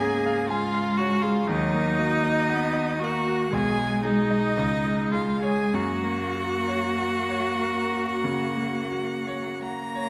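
A focused, close violin sings the lyrical melody with vibrato over a rich, expressive cello line with portamento, a smooth, even viola and a brilliant, bright grand piano in this warm, slow romantic piano quartet excerpt in F# major, moving with rubato at 42-61 BPM and bathed in a wet concert hall reverb.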